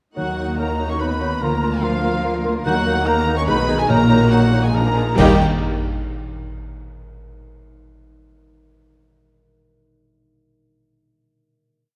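A close, focused symphonic violin section carries the lush, vibrato-rich melody of this urgent, restless romantic orchestral movement in Eb minor, a fast 3/4 at 144 BPM with uneven beats, doubled in unison by an airy flute section and at the octave by a distant cor anglais and mellow French horns. Beneath it, a second violin section and an intense viola section shimmer in very quiet tremolo, a roomy clarinet and a soft-attack bassoon repeat notes in the background, a woody cello section and a smooth double bass section hold the bass, and a ringing concert harp spreads broken chords through to 6.5 s. From 2.7 s, timpani strokes on bass notes, dark cymbal swells and crashes, and concert bass drum join as the tempo slows, landing on a full accent at 5.2 s and a final Eb chord in a warm production with moderate scoring-stage reverb.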